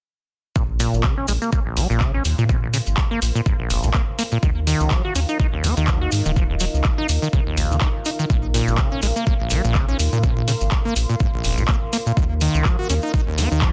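Acid house with a raw, trippy mood, this excerpt is cut from a longer piece and swings lightly on the sixteenths in 4/4. A squelchy, resonant sawtooth acid bass carries the riff up front, bright with a filter sweep and colored by cassette tape grit and digital delay. Beneath it, a round, deep analog bass blends sawtooth, sine and ring modulation and pumps with the sidechain. A thumpy, sampler-style kick drum sits up front, tape-warm and re-recorded in a large room, joined at 0.8 seconds by an analog drum machine playing dry handclaps and metallic hi-hats, while a grainy, mellow shekere stays close in the background. From 2.3 seconds a moody, warbling vintage pad enters with slow attack and long release, thickened by chorus and its own reverb and also sidechained, as the harmony moves between Bb minor and Eb minor before landing on Ebm7. The digital ambience and dense, heavily limited modern master keep the sound loud and compact.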